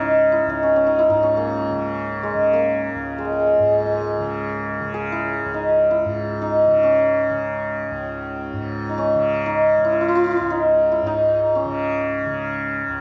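A bright, hammered santur sits up front, its ringing strokes tracing a melody in raga Shivaranjani on C# across the full 13 seconds of this short fragment from a longer Hindustani classical performance. Beneath it, a softly plucked tanpura holds a buzzing, shimmering drone in a lower register. The free-time feel is introspective and meditative, set in a moderate concert-hall reverb with a dark, warm production.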